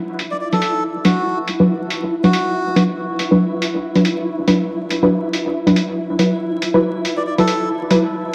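Dark and brooding, this short deep dubstep excerpt moves at 140 BPM in 4/4 with a half-time feel and swung 16ths, sitting in B minor. A flickering, granular texture built from detuned triangle tones fades in slowly and sustains through the whole clip, bathed in its own reverb. Up front, a muted, detuned sawtooth chord stab with chorus and dub echo carries the harmony from Bm to Esus2 at 6.0 seconds, its short, punchy hits evolving under a filter sweep. A reedy, breathy melodica, close-miked and nasal, plays between F#4 and D5 from 0.3 to 2.8 seconds and returns briefly at 7.2 seconds, its phrases trailing into dub echo. A gritty, pitched-down sampler hi-hat, compressed and low-pass filtered, ticks underneath at a low level. The production is dark, with a lush digital hall reverb and a layer of vinyl crackle.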